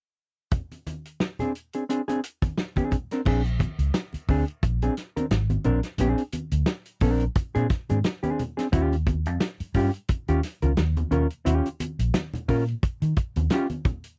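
Funk at 88 BPM in Bb mixolydian with a gritty, playful mood and a lightly swung sixteenth feel, opening at 0.5 seconds with a dry, up-front soul drum kit of fat snare, tight kick, hi-hat and dark crash cymbal and bright low-tuned congas in the background. A clean, dark hollow-body jazz guitar enters at 1.4 seconds voicing rootless Bb9 chords, and a round, punchy, foam-muted electric bass joins at 3.3 seconds on Bb9 before the harmony moves to Eb9 at 8.7 seconds, all captured in a close, 1970s-style studio sound cut from a longer piece.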